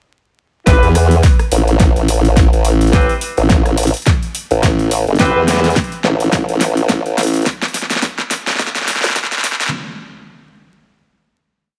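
A funky, gritty glitch hop piece builds from 0.7 seconds with a filter sweep and drum fill, as a saturated, up-front formant-sweep wobble bass with chorus rolls out modulated phrases of changing wobble speed under sparse, echoing chord stabs from a mellow jazz horn section roughened by 12-bit sampler grit and sidechain pumping, while a punchy broken electronic kick running to 9.3 seconds and a swung pop kit of fat snare, rim and metallic hats carrying on to 9.8 seconds, both in small room ambience, play over vinyl crackle.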